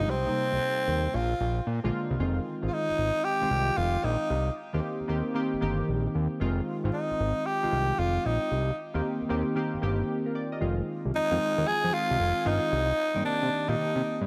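New jack swing R&B at 114 BPM in 4/4, with a swung sixteenth-note feel in F dorian, this bouncy, slick excerpt is cut from a longer piece. A raspy, gritty tenor saxophone carries the melody up front from 0.0 s, its punchy pop-style solo tone set off with delay. Round analog keys with chorus supply the accompaniment, their detuned square and sawtooth tones decaying under a filter sweep. A fat, nasal analog bass holds the low end with a saturated, sustained sound and a fast attack. The harmony moves from Cm7 and Bb7 into an alternation of Fm7 and Cm7, with a short break from 10.1 to 10.6 s before the final section. A lush hall reverb with a 3.1-second decay surrounds the parts.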